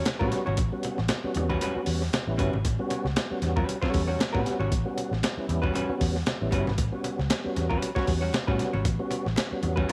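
Strutting and playful, this short funk excerpt with a light swing rides a gritty, compressed breakbeat sampler-style drum kit with a thumpy kick, medium-tuned snare and hi-hat, up front and tape-toned, while a dark, round, foam-muted fingered electric bass anchors the groove on an A13 chord. A clean, picked hollow-body jazz guitar sits forward in the accompaniment, and a lightly overdriven tonewheel organ adds clear stabs with key click, chorus vibrato and a slow rotary speaker. Very quiet, low-tuned congas with a thick-skinned, band-limited vintage character fill out the percussion in a light reverb.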